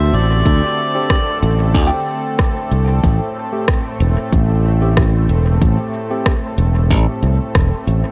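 Ambient dub in a peaceful, spacious mood, this excerpt opens with a brief reedy, breathy melodica phrase in dub echo. Alongside it sit a smooth, detuned sawtooth pad with chorus and tremolo, a buzzing, woody kalimba playing gritty arpeggios in the background, and a bright, up-front fingered electric bass with tube saturation. At 0.5 seconds an overdriven, deep electronic kick arrives alongside a tape-warm shaker and rim click with dub echo, a very quiet, clean tine electric piano adds stabs from 0.9 seconds, and the chords move from D7sus4 to Am7 within a roomy digital ambience.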